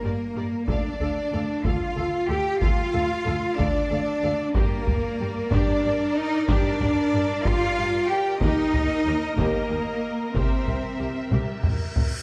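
Set in a rolling 6/8 at 62 beats per minute counted in dotted quarters, this short cut from an epic orchestral film score moves with a relentless, dramatic weight in D phrygian, its harmony passing from G minor to D minor, then back to G minor, on to E-flat and finally C7. A saturated, compressed taiko ensemble struck with heavy sticks sits up front from 0.7 seconds, driving the pulse beneath a lush bowed string body. Close, vibrato-rich cellos and expressive double basses anchor the low end, while a smooth-topped viola section fills the middle and a mellow, tight French horn section holds sustained chords in the background. Two violin sections carry the upper lines: a distant studio section plays the melody far back in the mix, and a chamber section shapes an even second line alongside it. Near the close, a drum fill enters at 11.3 seconds and a huge, bright cymbal swell rises at 11.4 seconds, all bathed in moderate scoring-stage reverb within a dark production.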